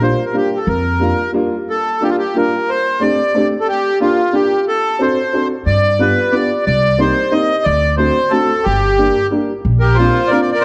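Nostalgic and charming, this short cut from a musette waltz in three puts a reedy, slowly beating accordion up front on the melody over a boxy, slightly detuned upright piano with a woody tone. A growly, dark pizzicato upright bass with steel strings sits forward in the mix, dropping out early and returning at 5.7 s as the harmony moves through seventh chords. Everything is bathed in a concert hall reverb and the worn, warbling pitch drift of old cassette tape.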